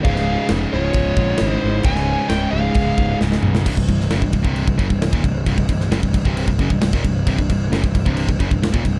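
This 9-second heavy metal excerpt has a dry, dark, warm production, with an aggressive, heavy mood at 133 BPM in a straight 4/4. Up front, a bright overdriven electric guitar and a punchy, fuzz-laden picked bass drive the riff throughout over a C1 to B1 bass range. They sit beside a polished metal drum kit with crash cymbal, tight kick, medium-tuned snare and toms, recorded in an airy, big-room sound. A dark, high-gain lead guitar carries the melody with tape echo, shadowed by a second distorted lead line in the background until 3.2 seconds. A tight, distorted rhythm guitar also sits in the background. The harmony starts on Db, and a drum fill at 3.2 seconds leads into a new section at 3.7 seconds, where the chord moves to C5 and the background rhythm guitar drops out.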